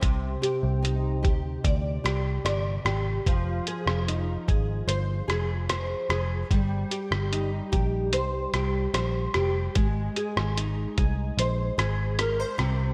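A fingerpicked nylon-string guitar, classical in tone with audible finger squeak and a shimmering ensemble chorus and vibrato, opens this wistful, lonely bedroom-pop excerpt at a slow 74 BPM alongside a dark, round, foam-muted electric bass and a muffled, pitched-down sampler-style drum kit of thumpy kick, hi-hat and rim click. All three sit up front as the harmony moves from Cmadd9 through Fm7 and Eb6/G to Abadd9, the drums carrying a compressed, tape-warm character. A moderate scoring-stage reverb with a 2.0-second tail lends the indie pop a big arena sound.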